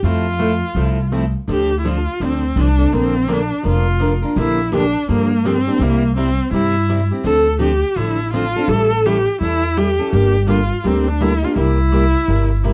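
A lively swung eighth-note feel in four drives this charming, swinging slice of acoustic string jazz in the manouche style, cut from a longer piece. A bowed viola carries the melody up front, played by one player with expressive vibrato, gliding portamento and a smooth top end. Beneath it, a picked steel-string acoustic guitar supplies the accompaniment with an auditorium-like body, sitting a touch lower in the mix. The upright bass, plucked and also up front, has a woody, growly, thumpy tone. After a brief opening on Fmaj7, the harmony moves at 1.5 seconds through Dm7, Bb and C, then A7, before closing toward Gm and C7. Moderate studio reverb surrounds the trio in a dark production.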